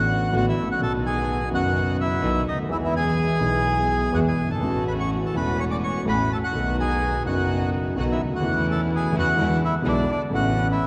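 Nostalgic and passionate, this short tango fragment, cut from a longer piece, moves with a loose, rubato feel in four. A reedy, dark bandoneon carries the melody up front, sitting between D4 and D6 with a smooth tone. A concert grand piano supplies the accompaniment, intimate and vintage in character, with deep bass, audible action noise and a warm glow. A chamber string section adds soft-attacked bowed stabs played sul tasto with light vibrato, close yet tucked into the background, while a single bowed double bass gives an earthy, distant low line with a slight tremble of its own. The whole recording sits in a church or concert hall, bathed in a wet cathedral reverb with a 4.1 s decay, and the harmony ends on an Aadd9 chord at 10.3 seconds.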